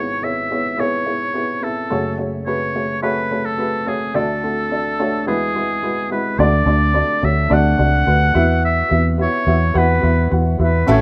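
Piano-driven pop at 107 BPM, anthemic and hopeful, in which a dark, worn upright piano with a woody, slightly detuned character carries the accompaniment while a smooth oboe sings the melody up front with light vibrato in a classical style. At 6.4 s the music moves into a new passage as a round, foam-muted vintage electric bass enters, amped and close. A full-bodied jumbo steel-string acoustic guitar adds a brief picked riff at 10.9 s, all within a small room and a rough home-demo mix of this cut from a longer piece.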